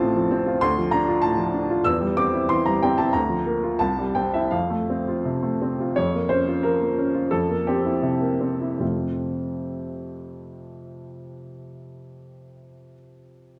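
A bright, woody upright piano carries this romantic character piece alone, its sound sitting up front and natural. The playing moves in a gently rubato duple metre and spans the keyboard from deep bass notes to a ringing upper register, giving the music a hopeful, warm feeling. Around 5.2 seconds the pace begins to slow, easing into a darker, minor-tinged passage before settling back onto the home chord at 8.8 seconds. A generous recital-hall reverb surrounds the brilliant piano tone, while the overall production leans dark. The recording is cut from a longer piece, and the piano plays through to 13.6 seconds.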